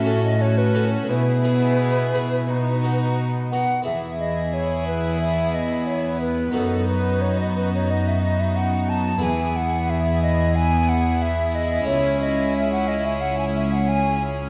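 Brilliant and lively, this baroque-style concerto movement in E major moves at a straight 90 BPM in 4/4, an excerpt from a longer piece in which a hollow, airy concert flute with vibrato and a crisp attack carries the melody until 14.2 s. A rich violin section with a smooth top also plays the melody beneath it, while a second violin section with light vibrato plays a close second line, and a distant viola section fills in the accompaniment alongside a plucked, brilliant Flemish-style harpsichord set in the background. An up-front, nasal cello section anchors the bass, and every string part shares a reedy gut-string, period-style tone, all bathed in a wet recital hall reverb with a dark, warm production.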